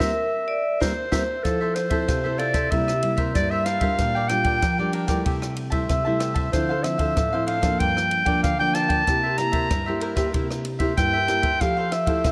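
Samba and choro at 94 BPM in F major, sunny and joyful, where a ringing vibraphone with slow motor vibrato joins the band accent for the first 1.4 seconds while a clear, classical-style clarinet carries the solo melody throughout with tape echo over crisp picked cavaquinho, fingerpicked nylon-string guitar with audible finger squeak and a subtle chorus, and a dry compact cocktail drum kit with punchy kick, high-tuned snare, rim clicks and dark ride cymbal, all set in a dreamy plate reverb through to the closing Fmaj9 at 11.6 seconds.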